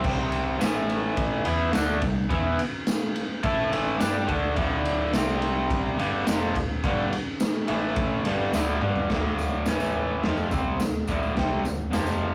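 A straight, steady 4/4 groove drives this raw, swaggering garage rock snippet, cut from a longer piece and played by a small band. An overdriven, double-tracked electric guitar sits up front with a bright, picked riff that shifts among C5, A5 and D5 power chords, while a fingered hollow-body short-scale bass underpins it with a round, dark, amped tone. The acoustic drum kit is gritty and saturated, with a punchy kick, a medium-tuned snare, crashes, ride and toms, all heard up front with a rolled-off top. A jingly tambourine joins in the background at 0.6 seconds. A drum fill from 8.5 seconds leads into a new section at 9.1 seconds, where the harmony moves from A5 to D5. The whole take has the rough feel of a rehearsal-room recording, with light reverb and warm saturation.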